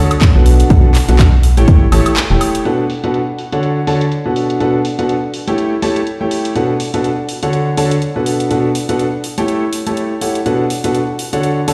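Heard through a big sound system in a bare stone room, this bittersweet, soulful piano house excerpt in B minor at 123 BPM, with a swung 16th-note 4/4 groove moving between Bm7 and A7, sets a clear, intimate grand piano riff, up front with audible action noise, tape echo and sidechain pumping, over overdriven house drums with bright hats, handclaps and woodblock, while a punchy layered electronic kick drops out at 1.8 s and a hollow, dark, organ-like FM bass stops at 2.4 s, leaving the piano and drums to carry on after a brief break.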